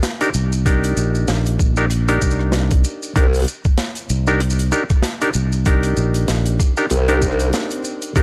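Glitch hop at 96 BPM in C minor with a swaggering, gritty mood and swung sixteenths, where a tight metal drum kit of hi-hat, rim click, shaker and snare is soon joined by an overdriven, thumpy electronic kick, alongside a fingered electric bass with tube saturation and mellow, nasal clav stabs through sidechain pumping and analog delay over a Cm7 chord. A formant-sweep wobble bass with chorus and overdrive joins at 3.2 seconds, before a background electronic swell arrives at 7.7 seconds during the break and a barely audible analog pad enters at 8.2 seconds, all in a dry mix with cassette tape grit and lossy compression artefacts.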